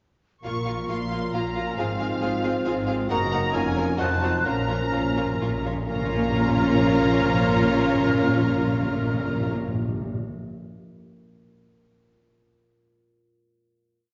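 An intense, vibrato-rich violin section carries the melody of this short, complete romantic piece for symphony orchestra, dramatic and stormy in Bb minor, moving in a fast 3/4 at 124-137 BPM. Beneath it, a smooth second violin section and a clear viola section sustain chords and repeated notes, while a rich cello section with expressive portamento and a soft-attacked double bass section double a bowed bass line. A silvery, pure flute sits high and distant, with a dark cor anglais, a clean clarinet and a roomy French horn section adding sustained chords that follow the rhythm of the tune. A bright, very quiet concert harp rings out broad thumb-plucked broken chords. The harmony moves from Bbm through Fm/Ab, Ebm/Gb and F7b9, and the music slows from 2.4 seconds, as hard-mallet timpani with calf heads enter at 4.5 seconds with a crisp, dry fill. A final chord arrives at 5.9 seconds, and the whole orchestra is heard from further back within a wet scoring-stage reverb that gives the sound a soft, dusky top.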